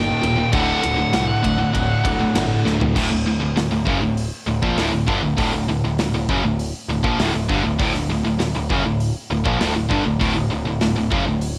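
A dark, high-gain lead guitar opens this aggressive heavy metal excerpt, holding a brief high melody over a low, picked riff that moves from an Eb chord to D. The riff is stacked from several guitars: an up-front distorted part with a bright edge, a second tight distorted guitar tucked behind it, and a double-tracked, crunchy overdriven guitar in the background. A growling picked bass, amped and overdriven, sits beneath them in the low register. A big acoustic rock kit with a punchy kick and medium-tuned snare drives the straight 4/4 groove with crash, hi-hat, ride and toms. The lead drops out at 2.6 seconds as the drums play a fill, and from 3.0 seconds a new section carries the dense riff onward. A small room reverb and the grit of a home cassette recording give the whole performance a raw, close-quarters feel.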